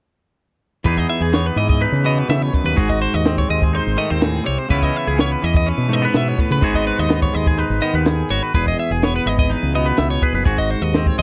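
Bright and playful, this math rock and midwest emo excerpt from a longer piece sets a clean, twangy electric guitar and a compressed twelve-string electric guitar playing arpeggios over a growling, overdriven fingered electric bass and a compact cocktail drum kit with a high-tuned snare, punchy kick and dark, rolled-off top, all in a dry, close 1970s-style studio sound as the chords move through Emaj7, G#7, C#m7 and G#m7.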